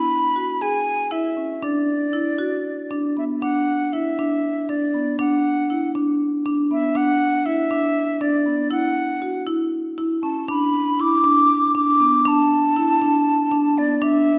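A breathy silver concert flute and a full, close-miked marimba struck with medium hard mallets open this playful, shimmering contemporary instrumental together. The flute carries the melody with vibrato and tongued notes, while the dry, up-front marimba plays arpeggios at 238 BPM in eighths in a straight 7/8, tuned to A4 = 438 Hz. The music moves from C#m7 and D into a new section at 3.4 s built on E5 and F#5 before the harmony drops away at 10.5 s, all set in a wet recital hall and cut from a longer piece.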